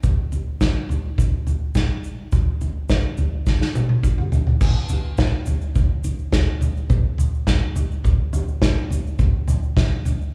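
A live club performance comes through the venue's PA with a light reverb and small-room ambience, giving this short cut from a longer folk piece an intimate, close-quarters sound. At 105 BPM in a straight 4/4, the mood is bittersweet and yearning. An unplugged drum kit sits up front, played with bundle sticks, its punchy kick, medium-tuned snare, toms and dark crash cymbal carrying the groove from the start. Far behind it, a grainy, bright tube shaker adds a faint acoustic texture throughout. A drum fill from 3.5 to 4.6 seconds carries the music from the opening section into the next, which runs to the end at 10.3 seconds.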